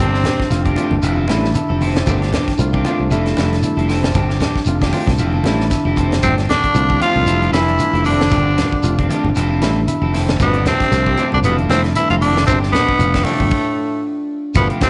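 A raspy, breathy tenor saxophone leads this hypnotic, driving afrobeat excerpt at 115 BPM in G mixolydian, sounding briefly at the start and returning from 6.2 seconds with a bright trombone and a clear trombone section set very quiet beneath it, over a growly, up-front fingered bass, a tight funk kit with a high-tuned snare, distant low-tuned congas, a grainy shekere, ringing harp arpeggios, slightly broken-up guitar stabs with lush chorus and a bell-like electric piano, all circling between G7sus4 and Fmaj7 in a small echo-chamber room until a stop at 13.5 seconds.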